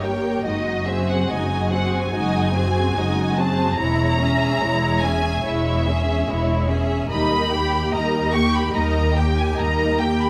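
Melancholic and elegiac, this slow romantic movement for string orchestra unfolds with a rubato feel, cut from a longer piece. Every section plays bowed with vibrato from the start through 10.3 seconds. Up front, a rich violin section carries the smooth melody, while a second violin line beneath it sounds lush and expressive. The dark violas fill in the accompaniment with a soft attack and gliding portamento. Underneath, a focused cello section sits in the background and a warm, even double bass section anchors the low end, the whole ensemble set in a moderate recital hall reverb.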